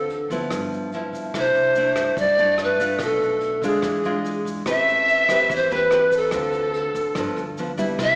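Bossa nova with a sunny, breezy mood, heard as a short cut from a longer piece and moving in a straight four-beat feel. A breathy, bright pan flute carries the melody up front, close-miked with vibrato and a soft attack, while a fingerpicked classical nylon-string guitar sits beside it, playing the accompaniment through jazzy changes such as Dm7, G6 and C69. In the background, a woody pizzicato upright bass holds the low end, a vintage brush kit adds hi-hat, punchy kick and rim click with a rolled-off top in a pumping room, and a grainy egg shaker ticks along close and dry. At 4.7 seconds the harmony turns toward A minor and a distant, lush violin section enters with a bowed second line, expressive portamento and vibrato. Moderate hall-like reverb surrounds the ensemble, though the overall sound has a small-speaker quality.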